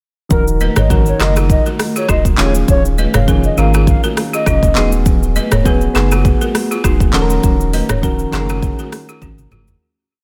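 Hypnotic and mellow, this short afrobeats piece moves at 101 BPM in 4/4 with a gentle sixteenth-note swing, built over an Abm7/Eb chord. A produced electronic drum kit sits up front with a deep kick, metallic hi-hats, syncopated rim clicks, shaker, handclaps and toms, while a saturated sub bass adds a thick, bouncy syncopated line with a fast attack. Soft electric-piano-like synth keys, warbling and vintage with chorus, push spread chords decorated with grace notes, and a woody, buzzing balafon enters at 0.6 s with an interlocking repeated figure doubled in thirds and touched by tape echo. A hollow, clarinet-like synth lead with vibrato, chorus and tape echo sings a syncopated hook until 4.9 s, as high-tuned congas ring softly in the background from a distant large room. The mix is otherwise dry, fading out from 7.4 s and closing with a short drum fill at 9.2 s.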